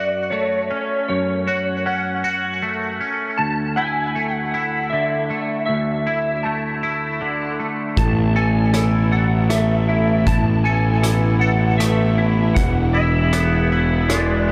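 A straight, unhurried 3/4 sway carries this euphoric, hopeful post-rock passage, cut from a longer piece. From the start, a twangy, compressed electric guitar sits up front with clean picked arpeggios, while a clean lap steel guitar sings the melody above it with slide and volume swells, both parts bathed in ensemble chorus and delay. At 8.0 seconds the music blooms: a fuzz-drenched picked electric bass enters low and up front, a loose indie drum kit adds a punchy kick, hi-hat and rim click from a distant, roomy space with a rolled-off top, and a bright symphonic string section holds bowed chords with light vibrato in the background. The harmony drifts from F#m through Dsus2 and Asus2 before landing on E, giving the lift an open, suspended quality. A moderate plate reverb soaks the dreamy mix.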